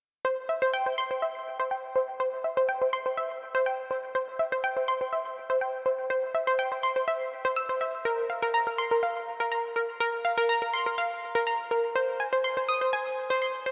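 A straight 4/4 pulse at 123 BPM drives this brief house excerpt in C mixolydian, and its mood feels hopeful and euphoric. The only voice is an analog pluck spinning arpeggios from 0.2 to 13.7 seconds, ranging between Bb4 and E6. Its detuned sawtooth tone is round and bright, with a fast attack, a decaying tail and a noise layer. A filter sweep runs across the pluck for its whole length, so the sound keeps evolving, while chorus and dub echo thicken and repeat its notes. The synth sits up front within a lush, wet hall reverb that lingers for about 2.6 seconds.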